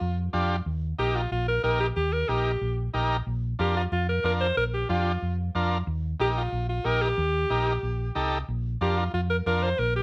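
Latin music at a brisk 184 BPM in Bb major, joyful and festive, this short excerpt sets a bright, forceful alto saxophone melody with scooped notes, vibrato and slapback echo up front over a dark, round hollow-body electric bass and a buzzy, overdriven vintage combo organ with heavy vibrato, moving between Bb and Eb chords in a lightly reverberant room.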